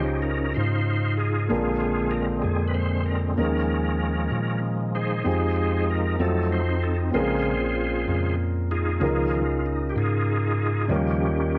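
Heard through a moderate echo chamber, this short cut from a longer slow gospel piece in 6/8 feels jubilant and hopeful. A reedy, up-front tonewheel organ, with audible key click, chorus vibrato and a fast rotary speaker, takes the solo in sustained chords over a concert grand piano whose accompaniment has deep bass and long sustain, while a clean, bell-like tine electric piano carries the bass line through its built-in speakers as chords such as Dbmaj9#11, Fm9 and F7b9 pass by.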